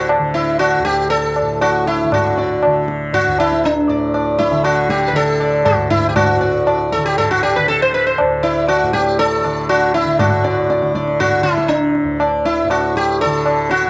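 Hindustani classical music in raga khamaj on D at a straight 119 BPM, radiant and serene, with an up-front, plectrum-plucked sitar carrying the melody in round, shimmering tones alive with sympathetic strings, a softly plucked, buzzing tanpura drone beneath, and low-tuned, short-ringing tabla with a vintage, band-limited sound, set within moderate spring reverb and small-room ambience, moving into a new section at 10.2 seconds.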